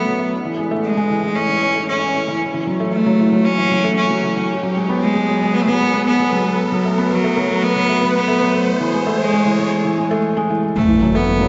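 A brilliant, biting solo cello opens the recording, carrying a bowed melody with light vibrato, joined from the start by a soft, felt-muted upright piano playing a riff, its mellow tone close and intimate with the creak of its action audible. Underneath, a chamber section of double basses bows a clear, earthy bass line, very quiet and set far back. This piano-and-strings electronica moves in a straight 4/4 with a hypnotic, melancholic mood, passing through chords such as Amaj7, F#m7 and G#m7 before settling on bare fifths. The whole passage is a build-up: an electronic riser enters at 0.4 seconds and climbs until 9.7 seconds, and an impact lands at 10.8 seconds on a return to F#m7. A huge, wet ambient reverb bathes the mix, and the top end is rolled off, lending the sound a dim, hazy quality. The passage is cut from a longer piece.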